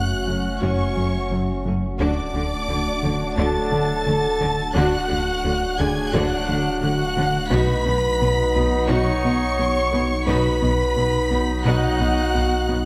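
Cinematic hybrid orchestral and electronic film score, cut from a longer piece, with a relentless, tense mood over a straight 4/4 pulse moving through F#m, D and B. Lush, expressive symphonic violins carry a high vibrato melody over a smoother second violin line, while a tight French horn section, distant, roomy trombones and a warbling, nostalgic lo-fi pad with chorus hold sustained chords. Underneath, a rubbery, hollow square bass riff bounces above a clean, dark sine sub bass, and from 0.3 s intimate chamber violas, even chamber double basses and very quiet symphonic cellos fill in the background, all set in a wet scoring-stage reverb.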